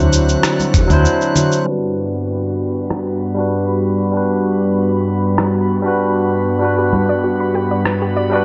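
Relaxed and smooth, this short sunset chillout excerpt moves at 97 BPM in 4/4 with a straight feel in G major, shifting from a D9 chord to Gmaj7 at 1.7 seconds. A bright, barky tine electric piano sits up front through a combo amp, lightly overdriven and trailed by delay, while an airy, breathy pad with a slow attack and chorus holds sustained chords beneath it. A woody, hollow-body fretless bass sounds only briefly at the start, joined by a thumpy electronic kick, and a dusty, gritty, tape-toned sampler-style kit of cabasa, rim click and toms carries the groove, with hard-handed congas and bongos appearing briefly near the start and again near the end. High above, a glassy texture of drifting overtones hovers quietly with chorus and its own reverb, and from 6.6 seconds a soft, round, warbling pluck plays arpeggios in the background with chorus and delay. A filter sweep runs from 1.7 seconds to the end, and the whole mix sits in a lush hall reverb with a dulled top end.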